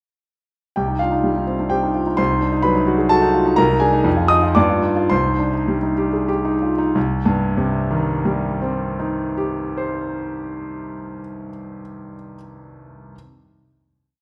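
Passionate and stormy, this short classical piano study in C minor unfolds in a rubato 3/4 between 89 and 130 BPM, with a solo concert grand carrying the tune in octaves over rippling figuration that reaches down into the deep bass. The piano sits up front with an intimate, vintage character and audible action noise, set in a moderate recital hall reverb. The music slows from 2.9 to 6.9 seconds through a minor, diminished and dominant progression before settling on a final chord that rings out until 10.9 seconds.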